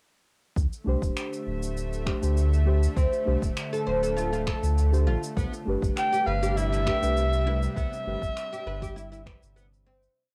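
A dark, intimate kamancheh enters at 6.0 s with a free bowed melody, touched by light vibrato and portamento, floating up front over a meditative organic downtempo piece recorded at home on cassette. Beneath it, a round sine sub bass plays a syncopated riff with sidechain pumping. A soft, punchy electronic kick and layered shaker and finger snaps drive the groove, while muted felt-like keys add syncopated quartal stabs with chorus and tape echo, and a tense, detuned bowed-like drone sustains chords in its own reverb. From 3.0 s a bright, woody oud adds a plectrum-plucked arpeggiated sequence through tape echo, and the piece fades out from 7.0 s.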